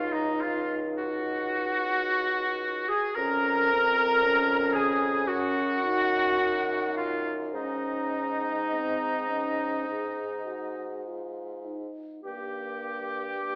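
A rubato pulse in 4/4 carries this slow, romantic movement for wind quintet, a lyrical fragment cut from a longer piece. The hollow concert flute sings the melody high above the ensemble with vibrato and tongued notes, heard close to the microphone. The up-front oboe traces a second line with light vibrato and a warm tone. Beneath them, the clarinet and French horn supply mellow accompaniment from a distant, roomy position, and a punchy bassoon holds the bass. The harmony moves through chords such as Ebm9/Db and Absus4 before arriving on Gm at 12.2 seconds, all set in a reverberant recital hall and filtered through an AM radio sound.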